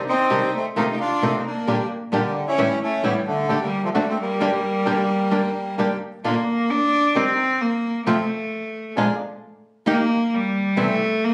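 Reedy, boxy bandoneon stabs open this tense, sultry tango excerpt in G minor. A smooth, dark second bandoneon carries the melody in the background with plate reverb until 5.8 seconds, beside a fingerpicked flamenco guitar and a clear, bowed cello second line, both up front, at a rubato 132 BPM in 4/4. From 6.2 seconds the music moves to Bb major as the earthy cello, with light vibrato, takes a solo, all caught on a phone in a room with club reverb.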